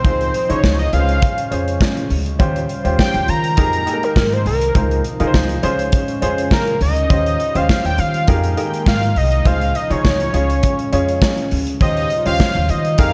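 Slick and danceable, this early-eighties boogie funk excerpt moves at 102 BPM in a straight 4/4, with a fat analog synth lead taking a solo across its full 13.1 seconds. The lead is a detuned sawtooth tone with a sub octave, triangle layering, vibrato and a filter sweep, sitting up front with a slapback echo. Beneath it, a baby grand piano plays accompaniment with an intimate, natural sound, audible action noise, short sustain and its own slapback echo. A chorused pulse-width pad holds shimmering, retro chords in the background, its mellow, slow-attack tone colored by ring modulation and a moving notch. An upright bass gives woody, thumpy pizzicato on gut strings, while a modern studio kit of punchy kick, medium-tuned snare and hi-hat drives the groove. The harmony circles through Dbmaj9, Eb13 and Fm11 inside a concert hall reverb that lends a big arena sound.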